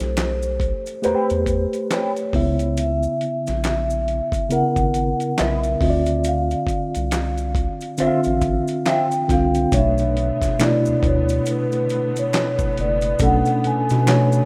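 This excerpt of smooth, soulful neo-soul R&B opens at 0.0 seconds with the full groove at once. A mellow tine electric piano sits up front, playing chords that move from Am9 through C#m7 and Dm9, while a vibraphone played with soft mallets carries the melody in an airy, ringing tone with a fast motor vibrato. Underneath, a round analog bass supplies a deep, dark low end, and a dusty sampler-style drum kit with a gritty, thumpy kick, medium-tuned snare, hi-hat and handclaps sets a relaxed 69 BPM pulse in 4/4 with a swung 16th-note feel, accompanied by maracas and finger snaps placed close and dry in the background. From 1.0 seconds, an electric guitar through a small old amp adds a slightly broken-up, lo-fi second line with wah. At 9.7 seconds the harmony shifts to Bm9 and a clear studio string section enters with lush, bowed sustained chords, all set in light reverb and small-room ambience that give the piece the rough charm of a home demo.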